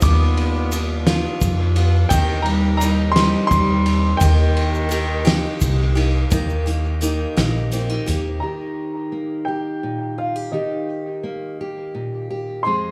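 A warm upright piano carries the melody from the opening of this nostalgic indie folk piece, a slow 6/8 in Eb major at 57 BPM, alongside a reedy bowed cello with light vibrato, a bright, boxy picked parlour guitar, an up-front pizzicato upright bass, a loose drum kit with a fat snare and dark cymbals, and a grainy tube shaker in the background. The cello drops out at 5.9 s, a dark, woody fingerpicked guitar with old strings enters at 6.3 s, and the bass, drums, shaker and first guitar fall away by 8.4 s, leaving the piano and the fingerpicked guitar together. Dub echo trails the piano and both guitars in an echo-heavy mix with a small room sound, and the passage is cut from a longer piece.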